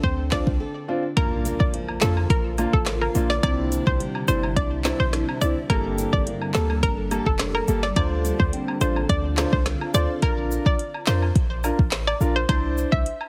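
Up-front afro-pop drums with a deep kick, woody snare and metallic hats drive this tough, bouncy dancehall cut at 106 BPM, joined by a boomy 808-style bass, a hollow, detuned square-wave pluck carrying the melody through chorus and digital delay, fingerpicked flamenco guitar arpeggios in the background until 10.8 s, boxy grand piano accompaniment, a blurred granular pad with sidechain pumping from 2.4 s to 10.2 s, saturated woodblock and cabasa, and a very quiet electronic impact at 1.3 s, set in a heavily compressed, radio-like digital ambience.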